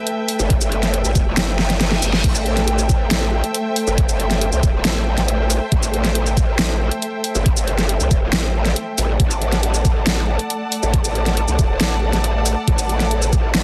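Distant, dark, woody strings bowed sul tasto with vibrato open this chaotic, aggressive heavy wobble dubstep excerpt at 138 BPM in half-time, their sustained chords pumping beneath a bright, growling, formant-filtered bass up front, while an overdriven knocking kick and a layered kit with a huge snare, crash, hi-hat and shaker sit up front, and a drum fill with a background reverse cymbal at 1.6 s leads the shift from E minor to C at 2.2 s before D arrives at 9.2 s in a dense, heavily limited master.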